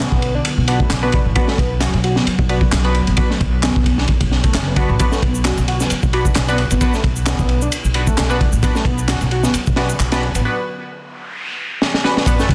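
A crunchy, up-front breakbeat kit drives this energetic, funky breakbeat excerpt at 132 BPM in B minor pentatonic, its punchy kick, high-tuned snare and dark ride cymbal sounding saturated and gritty, while layered electronic handclaps and shaker add softly clipped snap. A woody pizzicato upright bass holds the low end beneath a screaming, guitar-like overdriven synth lead riff with chorus and delay, and a nasal, band-passed chord stab with phaser enters at 0.7 seconds. A nostalgic, lo-fi tape-like pad warbles in the background with sidechain pumping and 12-bit sampler grit, and a break at 10.5 seconds leads into a noise sweep and sub drop from 11.0 seconds, a drum fill and a final impact.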